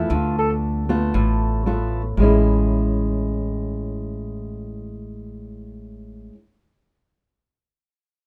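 Light reverb lends this short bossa nova cut a sophisticated, romantic air. It opens on a mellow, distant flugelhorn in jazz style, its soft-attacked, scooped notes and vibrato ending at 0.5 seconds. A dark, thumb-plucked classical nylon-string guitar carries the accompaniment while a woody pizzicato upright bass on steel strings anchors the low end, both up front, as the harmony moves from Dm6 to Amaj7 at 2.2 seconds.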